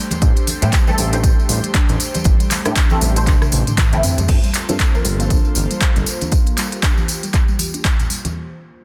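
Warm and moody, this deep house excerpt at 118 BPM in G dorian swings its sixteenths around an up-front, punchy electronic kick and a smooth, gliding synth bass that pumps until 6.0 seconds, with a smooth-hatted drum kit adding handclaps, rim clicks, toms and crash, a drum fill from 3.3 seconds, background congas and jingly tambourine, a muted, deep filtered dub chord stab with phaser and tape echo, an airy, breathy pad holding sustained chords, and a dusty, warbling lo-fi pluck arpeggiating through tape echo as both pad and pluck sweep their filters once the harmony shifts from Am7 to Gm11 at 4.3 seconds, all in a dense, dry, heavily limited mix.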